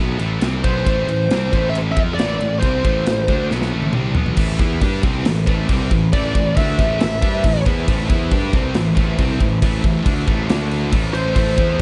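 Dark and epic, this short cut from a longer heavy metal piece drives forward in a straight 4/4 feel. Two distorted, high-gain rhythm guitars carry the riff from the start, one heavy and the other scooped and set back in the mix, over a growly, fuzz-soaked picked bass that sits up front. A tight metal drum kit joins at 0.2 seconds, its polished, airy big-room sound marked by bright cymbals, a medium-tuned snare and a tight kick, and it plays a fill just before the half-time second section begins at 4.4 seconds. A high-gain lead guitar with tape echo cuts in with brief melodic phrases, while a clear studio string section enters at 4.4 seconds with biting, lightly vibrato-tinged sustained chords in the background. The production is dry and dark, staying mostly on A minor before a brief D5 shift near the end.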